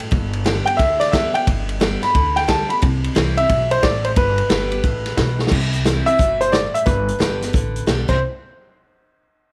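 Rockabilly with a rowdy, rollicking mood, this short excerpt from a longer piece drives along at 178 BPM in 4/4 with a swung eighth-note feel in C major. A vintage drum kit and a picked steel-string acoustic guitar start together at 0.0 seconds, the kit punchy and up front with a medium-tuned snare, rolled-off top and natural small-room character, while the dreadnought guitar adds a full-bodied, bright accompaniment. An upright bass joins almost immediately, its gut strings giving a dark, thumpy, woody pizzicato tone with a touch of tube saturation. At 0.7 seconds a bright upright piano takes the melody, its brilliant, long-sustaining voice sitting up front. The harmony moves between G and C, with drum fills at 5.3 and 8.0 seconds marking the turn into a new section and the close. Light reverb and a small room ambience give the whole band an intimate, live-sounding space.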